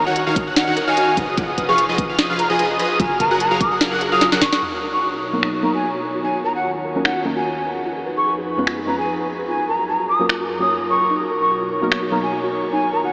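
This lush, bright future bass fragment, cut from a longer piece, opens at once on a hollow, mellow jazz flute carrying the melody up front. Around it sit airy lead arpeggios, a soft, round pluck arpeggio, a punchy detuned supersaw stab riff and a deep, boomy 808-style bass in the background, all pumping under sidechain in F# major at 148 BPM with a swung, half-time 16th feel. A trap kit of finger snaps, crisp hats and a sharp snare joins almost immediately, with a punchy, tape-tinged electronic kick under the first section. A drum fill tips into an impact and a background sub drop at 4.6 seconds, where the lead, stab, bass and kick drop away. A breathy, slow-blooming pad then enters at 4.8 seconds, and a second, full-bodied pluck adds accompaniment while filter sweeps move through the arpeggio and pad over chords like D#m7, F#maj7 and Bmaj7. The whole mix is soaked in an enormous ambient reverb with a lo-fi AM radio tint, giving it a dreamy, distant glow.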